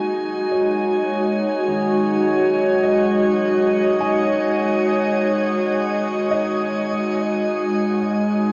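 A warbly, tape-like pad sits up front, holding detuned, lo-fi chords that open on F#69/D# and shift to G#5 at 6.9 s, in this melancholic, reflective ambient excerpt at a slow 52 BPM in 4/4. Alongside it, a nasal, string-like bowed drone adds tension with vibrato, while a soft, felt-muted upright piano fades in with intimate arpeggios trailing into diffuse delay. A glassy, drifting harmonics texture fades out high above, and the whole piece is steeped in a long shimmer reverb and the worn pitch drift of old cassette tape.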